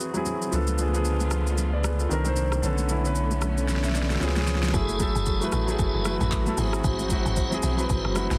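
A round, sine-toned sub bass sits up front in this deep, hypnotic amapiano cut, holding the low end from 0.5 s until 4.7 s, when a woody, punchy log drum bass with a fast attack and decaying tail takes over. The tempo is 114 BPM in 4/4 with a swung sixteenth-note feel in F# minor. A natural-sounding concert grand piano plays filtered accompaniment chords near the front, while a lush bowed string section with vibrato, portamento and sidechain pumping sits in the background. A layered electronic deep house kit with a deep kick, fat snare, handclaps, rim click, shaker and toms drives the groove and plays a fill at 3.7 s, with very quiet, high-tuned congas in soft hands underneath. In the second half a piping, lightly overdriven tonewheel organ adds stabs with key click, chorus vibrato, a slow rotary speaker and delay. The harmony moves through altered dominants and minor ninths such as C#7b9b13 and F#m9, set in light reverb with a dense, heavily limited modern master.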